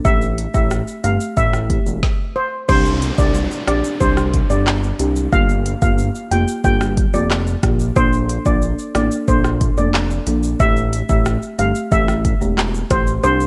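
Bouncy and tough, this dancehall piece, cut from a longer track, sets a shimmering steel pan melody with tape echo over woody folk marimba accompaniment and a fat, nasal analog bass, while an up-front afro-pop drum kit with a deep kick, crisp hats, handclaps, shaker and 12-bit sampler grit drives it along, halting for a brief stop at 2.0 seconds before a faint electronic downlifter enters from 2.7 to 8.0 seconds in a dry, close-sounding mix.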